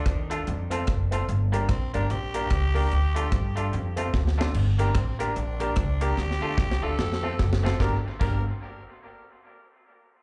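Mischievous and energetic, this short ska cut from a longer piece swings its eighth notes with a live club feel, as if heard through a venue's sound system with light reverb. A raspy, growling tenor saxophone carries the melody from the first moment, its gritty tone trailed by dub echo. Beside it, an upright piano with audible action noise and a slightly detuned, woody character punches out stabs with slapback echo. Plucked upright bass, thumpy and dark, sits up front alongside a dry reggae drum kit of tight kick, medium-tuned snare, rim clicks, hi-hat and crash. A clean, compressed semi-hollow electric guitar joins at 0.3 seconds with picked accompaniment, colored by both dub and slapback echo. A drum fill leads into a new section at 4.5 seconds, and another drives the later stretch as the chords move among Gm, Dm and F.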